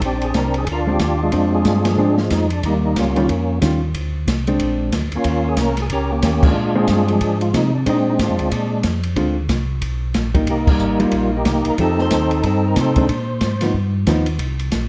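In a moderately reverberant large studio, this soulful, greasy soul jazz organ trio excerpt swings at 184 BPM in Bb mixolydian, with a lightly overdriven, percussive tonewheel organ carrying the melody over key click and chorus vibrato, a round, mellow tonewheel organ playing the bass through a slow rotary speaker, a dark, compressed hollow-body jazz guitar comping from 0.9 seconds, and a boomy, rolled-off acoustic drum kit with dark cymbals, as the band hits accents at 1.8, 6.4 and 10.6 seconds across changes moving from Bb9 to Eb9 and through Cm7 and F9.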